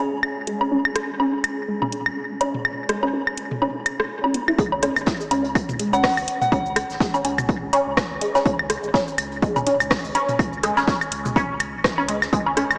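A swung 124 BPM groove in 4/4 drives this cool, hypnotic minimal techno passage, cut from a longer piece, as a dry, up-front analog drum machine clicks with rim, toms and woodblock through tape echo, a metallic, overdriven house kit adds hi-hat, rim click and shaker, and a squelchy, resonant blip pluck riff pumps through phaser, lush chorus and diffuse delay over a thick, saturated sub bass. A very quiet pulsing gated texture and a dark, nostalgic, lo-fi tape-like pad open the track, then both stop at 4.6 seconds, when the drop brings in a punchy overdriven kick and a faint high-passed acoustic kit of hi-hat and bundle-stick snare. A soft, pure FM bell sounds one brief chorused note at 5.9 seconds, all set in a dreamy, small-speaker mix soaked in long church reverb.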